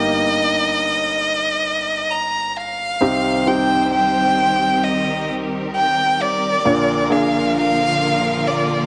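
A rich, vibrato-laden solo violin sings the heartbroken melody up front in this slow, emotional pop ballad in C minor at 66 BPM, over clear, polished baby grand piano accompaniment, and is joined at 3.0 s by a bright, lush, distant studio string section holding sustained chords, while the mix sits in a wet echo-chamber reverb with small-room ambience and a softened top end.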